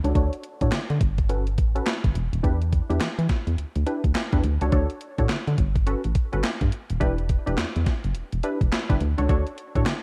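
A gated 80s digital drum machine sits up front in this short cut from a longer new jack swing track, its thumpy kick, handclaps, hi-hat and gated-reverb snare carrying a sampler-style, tape-warm character. Beneath it, a round, punchy FM bass with a fast attack and decaying notes holds the low end, as prominent as the drums. A funky polysynth built from detuned sawtooth and square waves plays chorused stabs through a low-pass filter, with a filter pluck on each hit and a filter sweep running through the whole 10 seconds. The chords move from Dmaj7 to Gmaj9#11 and Em7 and back, giving the upbeat, flirty R&B groove rich harmonic color over its swung sixteenths. The production is dark and dry, with little reverb beyond the gated drums.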